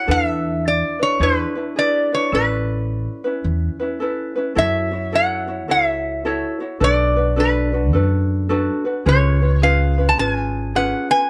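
Sunny and dreamy, this short Hawaiian cut from a longer piece sways with a swung four-beat lilt. A metallic, nasal resonator slide guitar, played with fingerpicks, carries the melody up front, over a light fingerpicked ukulele and a woody, thumpy upright bass plucked on gut strings. The close, detailed sound carries little reverb, and a second section begins at 4.6 seconds.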